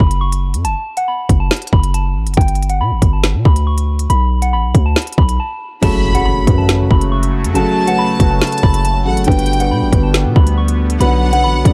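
This drill excerpt moves at 139 BPM in 4/4 with a half-time feel, its electronic kit up front with a hard-clipped kick, woody snare, crisp hats and crash cymbal, while a distorted, heavy 808-style bass with a noise layer drives the low end in F# phrygian. Above them a soft, pure FM synth bell carries the melody, mellow and treated with chorus, phaser and a low-pass filter, setting a tense, cold mood over chords moving from F#m through G to Bm. After a brief break at 5.4 seconds, the second half opens at 5.8 seconds as a dark, intimate concert grand piano with audible action noise joins in accompaniment, a floating violin section played sul tasto adds a second line through digital delay, and a sweeping, detuned sawtooth pad with chorus sustains chords. An electronic impact sits in the background from 6.0 to 7.6 seconds, and the harmony shifts to include Gmaj7. The production is dark and dry, with little reverb.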